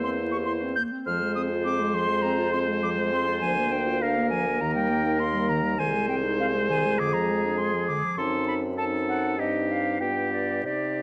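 Close, detailed microphones, a moderate scoring-stage reverb and a layer of vinyl crackle frame this urgent, stormy classical-period movement for wind quintet, cut from a longer piece, in C minor at 101 BPM with a rubato feel, where a bright concert flute with vibrato and a crisp attack carries the melody above a clear, up-front oboe second line, a dark, smooth-topped clarinet and a mellow French horn set distant in the background as accompaniment, and a warm bassoon on the bass, the harmony passing through an F#dim7 chord before landing on G7 at 10.0 s.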